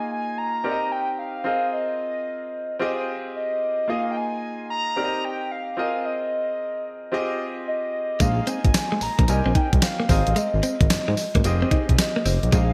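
Swung sixteenths give this confident, bouncy new jack swing excerpt its lilt, as a hollow, woody synth lead with chorus, phaser and vibrato carries the melody over clear, polished grand piano chords from the start, and at 8.2 seconds a thumpy 12-bit drum machine with a fat snare and gated reverb, a smooth gliding sawtooth bass and a clean, direct-recorded electric guitar riff with lush chorus join in, set within a moderate digital hall and a bright 1980s-style production.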